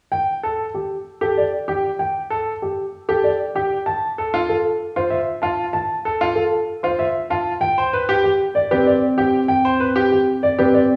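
In a straight, steady six-beat metre, this short classical fragment of minimalist pattern music, cut from a longer piece, has a bright and hypnotic mood. A warm grand piano carries the melody in a compact upper register with a short, clipped sustain, while a second grand piano supplies arpeggios just beneath it, its tone brilliant and intimate, with long sustain and audible action noise. The harmony moves from Gsus2 to F and then settles on a bare C5 chord. Near the close, at 8.7 seconds, a thumb-plucked concert harp enters on a single ringing C4, sitting up front alongside the pianos. A wet, large studio reverb surrounds the parts, yet the overall sound seems heard from further back in a small room.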